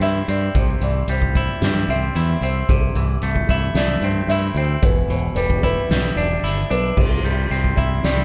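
From the first beat, a cathartic, cinematic post-rock passage at 112 BPM in straight 4/4 opens with the whole band together: a bright, picked clean electric guitar plays arpeggios through spring reverb, a felt-muted upright piano adds dark, boxy arpeggios with audible action noise, and a growling fingered bass gives an overdriven, direct-amped low end. Up front, a soft-mallet drum kit brings a fat snare, a boomy kick, hi-hat and a crash cymbal, with mallets on both drums and cymbals. The band plays live in one room with moderate studio reverb as the harmony moves from C to Am/C and Em7 before returning to C at 7.0 s in this cut from a longer piece.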